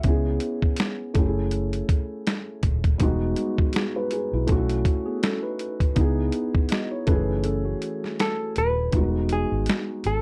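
Over a lightly swung 16th-note groove from a gritty, pitched-down boom bap drum kit with a thumpy kick, this dreamy, cosy lo-fi hip hop excerpt sets a felt-muted upright piano with audible action noise and cassette-tape softness beside a round, foam-muted electric bass, while a mellow tine electric piano with analog delay drifts in at 5.1 seconds, a break arrives at 7.4 seconds, and a clean, picked hollow-body jazz guitar melody heard briefly at the start returns at 8.2 seconds, all in a dark production with light reverb.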